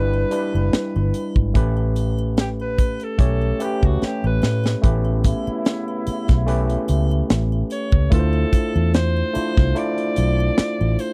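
A breathy, whispered alto saxophone carries the melody of this lush 1970s-style soul excerpt at 73 BPM, its light vibrato and soft attack sounding intimate yet distant over a gritty, barky electric piano played through a combo amp and a dark, foam-muted fingered bass that sits round and punchy up front. A tight funk drum kit with a high-tuned snare drives the smooth, lightly swung groove, fills just before a mellow trombone section adds stabs from 4.8 to 7.7 seconds, while a shimmering triangle stays in the background. The dry, close studio sound moves from Em7 and A9 to a Dm9 at 8.1 seconds.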